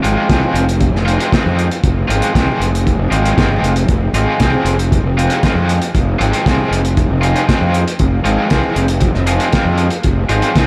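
Psychedelic rock with a dark, mysterious mood, this short cut from a longer piece rides a straight 4/4 on a single F minor chord. A bright, raw garage guitar plays a double-tracked, overdriven riff shimmering with harmonic tremolo, over a round, punchy fuzz bass and a cloth-damped, thuddy drum kit of muffled hi-hat, fat snare and tight kick. All three parts sit up front for the full 10.7 seconds, the drums gritty with a rolled-off top, inside light reverb and studio ambience.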